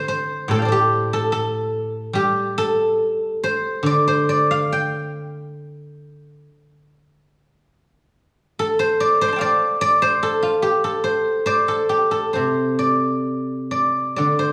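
Freely paced and rubato over a loose 2/4 pulse, the music drifts at roughly 66-75 BPM in a Chinese traditional style for solo plucked strings, set in the D yu mode. A single guzheng carries the whole piece, played with fingerpicks and placed up front, its tone silvery and ringing across a span from A2 to D6. The mood is longing and elegant, with the instrument's acoustic body giving the notes a gentle glow. Moderate recital hall reverb, lasting about 1.5 seconds, surrounds the playing with a sense of space and a faint studio ambience. At 12.4 seconds the music moves into a new section that continues until this fragment of a longer performance ends at 14.5 seconds.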